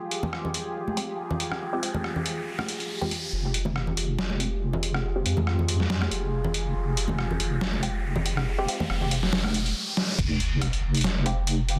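A dense, heavily limited mix sits in a moderate echo-chamber reverb, where a deep, moody pad of detuned sawtooth and sine layers with ring modulation holds a sustained chord beneath gritty, pitched-down sampler drums re-recorded in a small room and ringing, high-tuned congas touched with dub echo. Muted, detuned sawtooth chord stabs pass through phaser, analog chorus, cassette tape and echo while an electronic riser runs, and at 3.3 seconds a soft, square-wave wobble bass enters up front as a filter sweeps the stabs through a long build-up. This dark, brooding half-time deep dubstep fragment reaches its drop at 10.2 seconds with a sub drop, an impact and a brief, knocking layered electronic kick following a drum fill.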